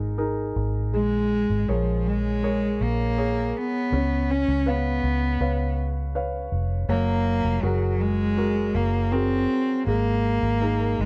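Emotional and melancholic, this short pop ballad fragment moves at a steady, straight pulse as a polished grand piano lays down the chords and a dark, foam-muted electric bass sits round and punchy up front from the start. At 1.0 seconds a single bowed cello takes the melody, its rich, nasal tone shaded with vibrato and a slapback echo. The sound is dry and close, like a 1970s studio session with light reverb, and the passage moves through Bbm7, Db7 and Gbadd9 before settling back on Absus2.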